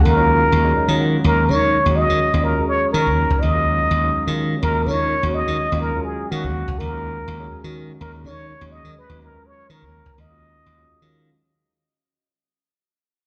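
A plunger-muted trumpet leads this short cut from a longer electric jazz fusion piece, its breathy, wah-wah tone carrying a smooth-topped solo line up front throughout. Beneath it, a glassy slap bass sits just as prominently, bright and punchy, anchoring the driving, intense groove in an odd seven-beat metre with a straight feel. An overdriven tine electric piano, barky and gritty as if played through a combo amp, sits further back in the mix with a phaser, supplying accompaniment and brief fills around 0.5, 3.9 and 7.3 seconds. The trumpet and electric piano both carry a slapback echo, and the harmony rests on a single Ebm11 chord. Captured at a live gig through the venue's PA, the sound has a small-room ambience blended with the reverb of a recital hall, and the whole passage fades out across its roughly eleven seconds.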